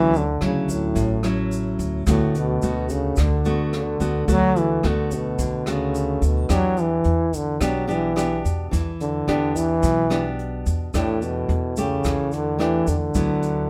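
Heard in a studio setting with moderate reverb, this relaxed and sophisticated bossa nova moves at 108 BPM in a straight 4/4 in D major. A jazz-style trombone carries the melody low in its range, its tone round and intimate, with light vibrato and scooped notes. Beside it, a bright, fingerpicked nylon-string guitar in classical style sits equally forward, outlining the harmony from Dmaj9 through D6 and Em7 to A7sus4/E before settling on D69 at 13.2 seconds. An upright bass plays pizzicato underneath, woody and thumpy, while a brushed drum kit entering at 0.1 seconds adds hi-hat, rim click and a boomy kick further back in the mix. A faint tube shaker joins at 0.2 seconds with a grainy, mellow shimmer, completing this short, cut-off fragment of a longer piece.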